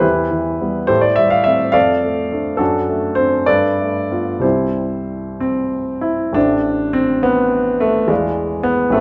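A baby grand piano carries this short passage alone, its tone present and polished, sitting up front in a wet recital hall reverb that lingers for about 1.4 seconds. The music is a romantic character piece in C major, moving in a lilting 6/8 at roughly 60-72 beats per minute to the dotted quarter, with a flexible rubato feel that gives it a hopeful, passionate character. The harmony starts on E minor and steps through A minor seventh, D minor and D seventh chords toward a rich G ninth, settling on C major at 4.4 seconds. A new section begins at 6.4 seconds on A minor, turning toward a tense E7b9 chord as the fragment breaks off, cut from a longer piece. The piano spans from low A1 up to F5, and the overall production is dark and soft-edged, with the upper treble rolled away.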